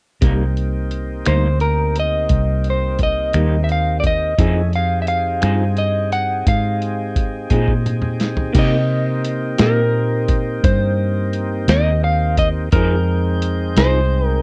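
A dry, close recording with a 1970s studio character frames this smoky, soulful slow blues in C minor, moving at 58 BPM in a straight 12/8 and cut from a longer piece. Up front, a lo-fi sampler-style drum kit sounds compressed, pitched down and muffled, with a thumpy kick, a medium-tuned snare, hi-hat, toms, crash cymbal and finger snaps, and a drum fill runs from 7.5 to 8.6 seconds. A vintage fingered bass, foam-muted, round and punchy, anchors the low end beside an electric guitar through a small old amp whose slightly broken-up, lo-fi accompaniment carries a harmonic tremolo. Behind them, a smooth tonewheel organ holds sustained chords with audible key click through a slow rotary speaker. From 1.3 seconds a clean, dark, picked electric guitar takes the melody as the harmony shifts between Cm7 and Fm7.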